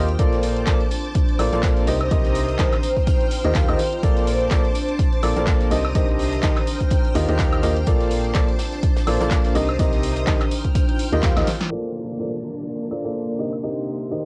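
A swung groove of punchy electronic kick, analog drum machine claps, hats, snare and woodblock, and a very quiet, muffled soul drum kit drives this uplifting, joyful piano house excerpt. A woody, slightly detuned upright piano riff sits up front over tube-saturated, hollow, organ-like FM bass, shimmering string-machine violins and a deep, moody ambient pad, all pumping to the sidechain, with cassette-tape grit on the piano, strings and pad. Then a drum fill and band accent give way at 11.7 seconds to a filter sweep, joined a moment later by a background downlifter.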